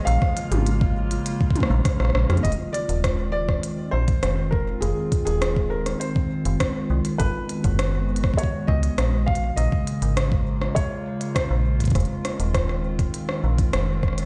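IDM at 101 BPM in a straight 4/4, this short cut from a longer piece feels melancholic and intricate, moving through minor seventh chords from Bbm7 to Fm7, Abm7 and back. A felt-muted upright piano carries the melody, soft and boxy with audible action noise and short sustain, trailed by digital delay until it stops at 11.8 seconds. Beneath it, a warbling, nostalgic tape-like pad holds detuned, ring-modulated chords with slow attack, chorus and its own reverb, while a grainy, flickering granular texture glints very quietly only in the first 2.5 seconds. Up front, a metallic FM bass with fast attack and decaying notes anchors the low end alongside a gritty, thumpy, pitched-up kick drum. An industrial drum kit adds crisp hats, rim clicks and toms with digital delay, and a drum fill from 1.9 seconds leads into the longer second section. The whole mix sits in a bare stone room, as if played through a big sound system, with light reverb and a digital ambience.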